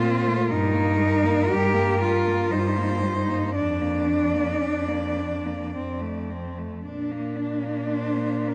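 Classical chamber music for cello ensemble, this tender, lyrical fragment is cut from a longer piece and unfolds in an unhurried, rubato triple metre. Four bowed cellos, each a single player, sound together across the full 8.5 seconds: one sings the melody high in its register, a second line sits beneath it, a third provides accompaniment, and the lowest holds the bass. Every part has a rich tone with vibrato. The melody is smooth, even and close, while the other three share a focused sound, with the second line and bass placed up front. The harmony moves from Eb/G at 0.5 seconds through Bb/F and F before settling on Bb at 6.9 seconds, all within a moderate concert hall reverb and a dark, warm production.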